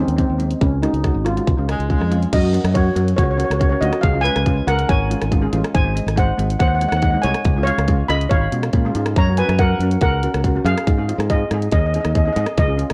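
Carefree and festive, this calypso excerpt puts a shimmering, close-miked steel pan melody up front with tape echo, while a second, darker steel pan struck with hard rubber sticks plays smooth accompaniment beneath it. A growly fingered electric bass and a layered electronic drum kit with a tight kick, crash cymbal, hi-hat and rim click carry the straight 4/4 groove, and a mellow jazz-style horn section slips in briefly from 1.7 to 2.3 seconds, just before the next section begins. Light reverb and the warbling pitch drift of worn cassette tape give the recording an aged character.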